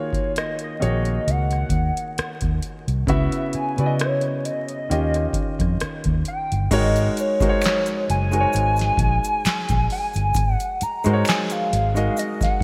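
A gently swung 66 BPM groove from a booming analog drum machine, with its deep kick, crisp snare, handclaps, rim clicks, crash cymbal and metallic hats bathed in gated reverb, anchors this smooth, soulful neo-soul and R&B excerpt in Eb phrygian, where a round, foam-muted fingered electric bass sits up front beneath a warm baby grand piano moving through Ebm11, Dbm11 and Eb7 to Ab9sus4, a hollow, warbling square-wave lead with chorus and vibrato carries the melody, and a tube shaker with finger snaps enters in the background at 6.7 s, all framed by bright 1980s-style digital production and vinyl crackle.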